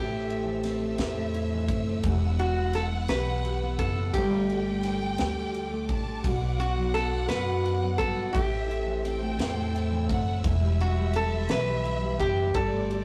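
A slow, straight 6/8 pulse at 57 BPM drives this dramatic, aching pop ballad in E minor, cut from a longer piece, with a modern studio drum kit of punchy kick, medium-tuned snare and ride cymbal entering at 0.3 seconds over a growly, thumpy pizzicato upright bass sitting up front. A metallic, nasal lap resonator guitar played with slide and fingerpicks carries the melody through slapback echo, while a lush symphonic violin section adds an expressive, soft-attacked second line above fingerpicked nylon-string guitar accompaniment and a focused, bowed studio string section holding sustained chords in the background. The rough rehearsal-room recording carries tube saturation and moderate reverb as the chords move from Am through Em, Gsus2 and Bm before returning to Am and Em.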